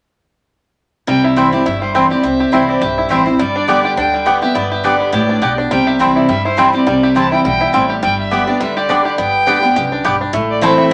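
Swung eighths drive a brisk 207 BPM in 4/4 through this rustic, joyful bluegrass fragment, which moves between C and G before touching A minor at 10.3 seconds. A twangy, fingerpicked banjo and a clear, distant fiddle with light vibrato share the melody, while an up-front, bright dreadnought guitar carries the picked accompaniment over a dark, thumpy pizzicato upright bass sitting low in the mix. A round, double-strung mandolin adds picked stabs from 1.4 seconds, and the studio reverb is noticeably wet.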